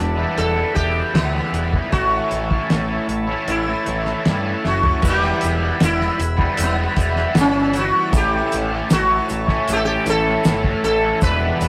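A rough rehearsal-room recording with moderate reverb carries this trippy, hypnotic psychedelic rock excerpt at 78 BPM in E dorian, where a buzzing, shimmering sitar melody sits up front over a bright, double-tracked overdriven semi-hollow guitar riff through a rotary speaker, a growling overdriven picked bass, and a buzzy vintage combo organ holding chords in the background, while a cloth-damped thuddy drum kit with dark cymbals and a fat snare enters at 0.4 seconds, fills into the second section at 4.6 seconds, and a grainy tube shaker joins at 5.0 seconds as the harmony moves between Em7, Em and A.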